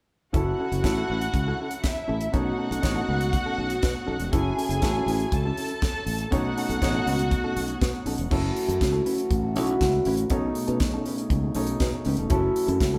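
Disco at 120 BPM in F# dorian, driving and sultry, built on a tight, up-front funk kit with a high-tuned snare and a bright, punchy fingered electric bass, while a clean, compressed electric guitar sits in the background and an intimate concert grand with audible action noise fills out the harmony over a two-chord F#m7 to B9 vamp. A dark, woody violin section, bowed sul tasto with lush vibrato and a distant placement, carries a second line until 8.3 s. At that point a mellow French horn section enters with sustained chords in the background, all of it heard as a band playing live in one stone room with a reverberant tail.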